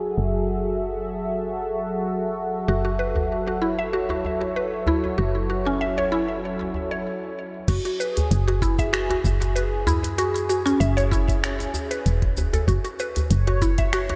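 A woody, mallet-like FM synth pluck sits up front in this earthy organic downtempo excerpt, spinning arpeggios through analog chorus and delay from 2.7 seconds, its percussive, fast-attack, decaying notes carrying a noise layer. Beneath it, a detuned sawtooth pad holds smooth, sustained chords with chorus and a moving notch, breathing with sidechain pumping alongside a round, mellow FM bass. The music moves at 96 BPM in 4/4 with a light 16th-note swing in F# minor, and the harmony shifts from F#m7 to A/F#. A tight, close djembe played with soft hands adds cracking acoustic accents soon after the pluck enters. A brief stop at 7.1 seconds gives way at 7.7 seconds to a knocking electronic kick, re-recorded in a large room, and a produced kit of smooth hi-hat, cabasa, finger snaps and crash cymbal. The whole mix is soaked in a dreamy cathedral reverb.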